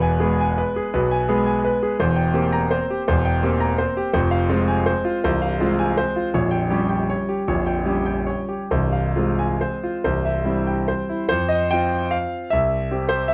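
A flexible, rubato waltz in triple time gives this short classical piano piece, cut from a longer work, a wistful and elegant mood. A solo grand piano plays throughout, its clear, smooth and slightly vintage tone sitting up front and spanning from the deep bass up to the upper middle register. Light reverb and a dark production surround it, and the music moves into a brief new section at 11.3 seconds before the clip ends at 13.3 seconds.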